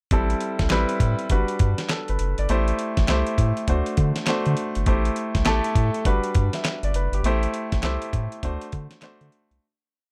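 A punchy, slick new jack swing R&B piece in which a clear, polished baby grand piano plays syncopated chord stabs with short fills, a round, deep analog bass rolls out a bouncy swung synth-funk line, and a dusty, gritty sampler-style kit drives a hard-swung drum-machine beat with a thumpy kick, a fat snare layered with handclaps, and hi-hat, all cycling through a dry Am7, Gmaj7, Am7, D7 verse that fades out from 7.2 seconds.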